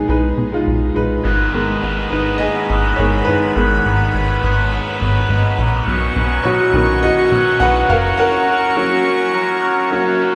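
A clear, woody upright piano opens this pop excerpt up front, alongside a rich studio string section holding soft-attack chords and a punchy, dark analog bass with a plucky, decaying sawtooth edge. The mood is warm and anthemic, carried by a light swing on the sixteenths. At 1.2 seconds a raw, bright garage guitar enters up front with an overdriven riff colored by phaser, while the boxy piano takes the lead as a solo through to the end. The bowed strings float close and pure beneath, and the harmony moves through Abm, Cbadd9 and Gb. The bass drops out at 8.1 seconds, leaving piano, guitar and strings inside a wet recital hall reverb that gives the sound the spacious air of a church or concert hall.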